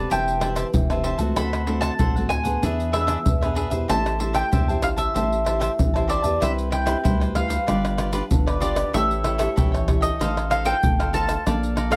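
Bittersweet and nostalgic, this excerpt of samba and choro moves at 95 BPM in a straight 4/4, shifting from A minor to C major at 6.4 s as the harmony travels from Am9/E through D7 and E7 to Cmaj7, G7, A7 and F7/A. A mellow, round mandolin carries the melody with its double strings bathed in plate reverb, over a crisp picked cavaquinho and a fingerpicked classical nylon-string guitar with fresh strings. Underneath, a thick, saturated sine sub bass sits deep, while egg shaker, tight surdo, pandeiro and tamborim enter at 0.1 s close and up front in a moderate studio ambience.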